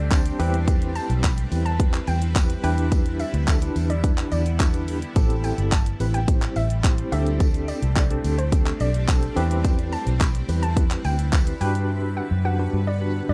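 Dance-pop at 107 BPM in a straight 4/4, confident yet bittersweet, moving through Cmaj7, Em7, Am7 and D7sus4, back to Cmaj7 and then settling on Gmaj7 in this short cut from a longer piece. A punchy, up-front electronic kit of kick, hi-hat, handclaps and shaker plays alongside a dark, round, foam-muted fingered bass. That bass, a tine electric piano with fast tremolo through a combo amp, a shimmering, ethereal pad with phaser and chorus, and a hollow, bouncy square pluck melody entering at 1.0 s all breathe with sidechain pumping. A faint, jingly tambourine sits far back in a rough home-demo mix with light reverb. The tambourine stops at 11.7 s and the drums drop out at 11.9 s, leaving the bass, piano, pad and pluck ringing to the end.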